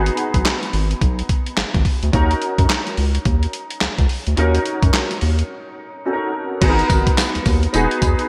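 Slick and punchy, this short new jack swing excerpt in G# minor rides a swung 107 BPM groove, with a clear, polished baby grand piano accompanying through an ensemble chorus over G#m9 and D#m7 chords, a round, deep analog bass built from square and sine waves with a wave-folded edge, and a gritty, compressed sampler-style drum kit of thumpy kick, snare, hi-hat, handclaps, tambourine and crash treated with gated reverb, all set in bright 1980s-style digital production, with a break at 5.5 seconds before a new section shifts to G#m7 and Emaj7 at 6.6 seconds.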